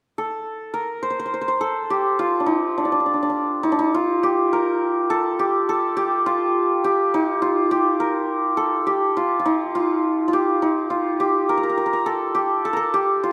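In a 6/8 metre, this melancholic, hypnotic fragment of a longer Persian piece features a solo santur, bright and shimmering, hammered close up front and ringing through a moderate recital-hall reverb, moving into a new section at 3.6 seconds.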